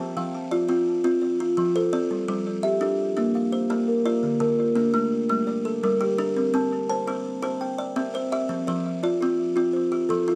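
Two buzzing kalimbas play arpeggios together from 0.0 s in a hypnotic, trance-like southern African traditional piece at 113 BPM in 12/8, set in G dorian. The louder kalimba has a woody, hollow-box ring from thumb plucks, while the quieter one, plucked with the thumbnail, sounds bright and short; both sit up front with tape echo inside a wet studio reverb. Over this brief cut from a longer piece, the harmony moves from F to G5, then through Bb, Dm, Gm and C before returning to F.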